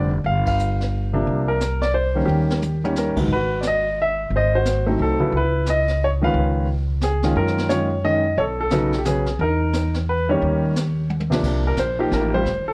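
This short clip from a longer jazz piano trio performance sounds like a worn, warbling old cassette, with pitch drift, lossy compression artefacts and a light reverb across the recording. The tempo swings at 177 BPM in 3/4, with a cool, swinging mood that settles into G# minor from 3.3 seconds. A warm baby grand piano with short sustain and plate reverb carries the melody up front, while a woody, thumpy upright bass on gut strings is plucked close by underneath. The brushed drum kit comes in at 0.3 seconds and sits further back, its dark cymbals, high-tuned snare and boomy kick heard in a small, natural room. After a band accent at 0.4 seconds and a drum fill leading into the key change, the harmony moves through rich chords such as C#m9 and F#maj9. A second fill sets up a brief grand piano solo from 11.4 seconds to the end at 12.7 seconds.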